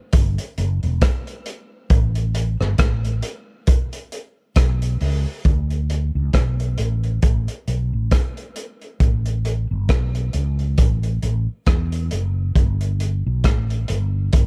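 Sweet and tender, this short cut from a longer lovers rock reggae piece moves at an unhurried pace with a gentle swing in its sixteenth notes. Just two parts play together from start to finish: a mellow fretless electric bass and a crunchy breakbeat drum kit. The bass sits low and up front, its round, amped tone giving the groove a soft, cushioned floor. The drums, built from hi-hat, kick drum and rim click, sound like an acoustic kit in a small room, gritty and saturated with a tight kick and a rolled-off top. The production is dark and dry, with little reverb, and the music shifts into a new section at about 5.4 seconds.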